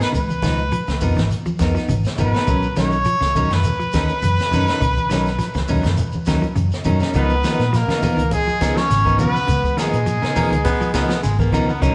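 A live band in a wet stone room with a dulled top end plays a driving, joyful afrobeat cut at 103 BPM in Db mixolydian over Db13 and Cbmaj9 chords, where a bright, distant trumpet carries the melody above a semi-hollow guitar's background arpeggios, clean guitar stabs, a boomy brushed drum kit, grainy shekere, thin-skinned congas and a dark, round fingered bass, with a growling tenor saxophone adding a second line from 7.2 seconds and a raspy baritone saxophone joining at 10.4 seconds.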